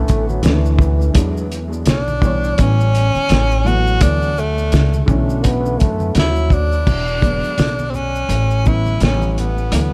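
A breathy trombone and a dark, slightly detuned upright piano with audible action noise open this smoky, nocturnal jazz-hop fragment over woody pizzicato upright bass and a muffled, gritty, lo-fi cloth-damped drum kit with a fat snare, while very quiet maracas and congas sit far back; a bright, vibrato-laden tenor saxophone takes the lead at 1.9 seconds, its scooped notes trailing dub echo like the trombone's and piano's, and the trombone drops out at 6.9 seconds in an echo-heavy mix.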